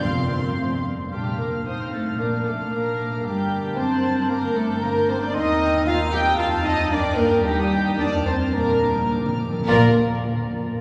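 This quick classical-period symphonic movement in Bb major moves at 104-116 BPM in a straight 2/4, with a graceful, spirited character, and is cut from a longer piece. A dark, woody violin section carries the melody high and distant with vibrato and sul tasto bowing, over a second violin section that sounds rich, pure and floating, while the violas add soft-attacked accompaniment from the background. Cellos and double basses anchor the bass with an intimate, close tone, and a French horn section holds sustained chords beneath, with timpani struck with hard mallets, crisp and articulate, at the opening. From 1.1 seconds, a bright, vintage-toned clarinet and a smooth-topped cor anglais enter to weave second lines, joined at 1.7 seconds by an airy, hollow flute, and the harmony turns briefly toward G minor before returning to Bb. The tempo slows from 6.9 seconds, and the timpani return with a fill at 8.5 seconds as the phrase settles onto Bb, all bathed in a long, wet cathedral reverb.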